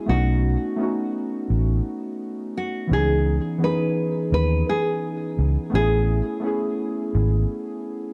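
Hip hop with a melancholic, reflective mood, this short cut from a longer piece sets a fingerpicked nylon-string guitar melody, full-bodied and touched with tape echo, over muted, felt-like synth keys whose soft, decaying tone carries a chorus shimmer. A vintage foam-muted electric bass sits round and dark beneath them, the loudest part in the mix, as the harmony moves from B7 to C#m7 and then Amaj9. The dry, close sound keeps all three parts up front and intimate, with the swung feel lending a relaxed sway.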